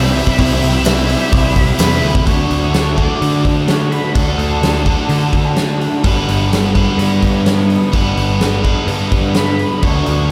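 A dreamy, reverb-soaked mix opens this wistful shoegaze and dream pop excerpt at 127 BPM in D major, where a huge arena drum kit with a fat snare and punchy kick drives biting overdriven guitar with reverse reverb, thick dark fuzz guitar with ensemble chorus, and growling overdriven picked bass through a C to Dmaj7 to G progression, while an octave-fuzz lead guitar carries the melody with analog delay, a swirling phased string machine holds vintage sawtooth chords until 2.2 seconds, and a very quiet jingly tambourine appears briefly from 0.8 seconds.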